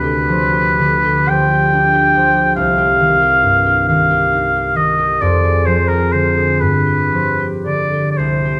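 In a slow, rubato 6/8 that drifts between 37 and 47 BPM in dotted quarters, this brief romantic classical duo for oboe and concert harp has a yearning, solemn mood. The oboe carries the melody between Bb4 and G5 with a light vibrato and a soft attack, sitting slightly above the fingerpicked, ringing harp, which spans C2 to Ab4 across G7/D, Cm, Ddim/F and back to G7 over the full 8.6 seconds. Close, detailed microphones and light reverb give the pair an intimate, warm presence.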